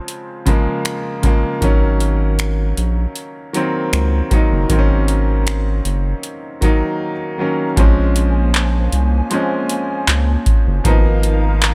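A clear, intimate baby grand piano opens this sensual, moody contemporary R&B excerpt at 78 BPM in Bb minor, its action noise audible as a booming, tape-tinged analog drum machine with deep kick, metallic hi-hats, finger snaps and handclaps sets a lightly swung groove, joined at 1.6 seconds by a round, dark analog bass and at 7.8 seconds by a hollow, flute-like pad with ensemble chorus, all heard in a dry, close-up sound.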